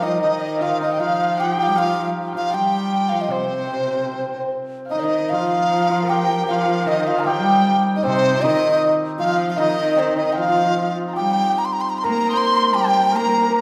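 Bathed in the wet reverb of a recital hall, this wistful, graceful fragment of Chinese traditional chamber music in a free rubato feel lets a breathy, hollow large dizi with a buzzing membrane carry the melody up front, while a dark cello and a woody erhu, both bowed with vibrato and portamento, play softer second lines alongside a shimmering hammered dulcimer behind it, with a new section arriving at 4.9 seconds.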